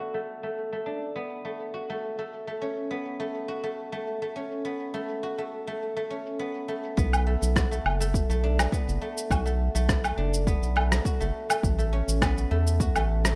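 Set in a digital ambience, this hypnotic, earthy organic downtempo excerpt opens with a ringing, silvery guzheng playing fingerpicked arpeggios through a low-pass filter and digital delay, joined at 0.1 seconds by a gritty, sampler-style kit of electronic shaker, woodblock and rim click, before a round, deep analog bass with sidechain pumping and a punchy, overdriven electronic kick both arrive at 7.0 seconds over a Bm7-to-A progression.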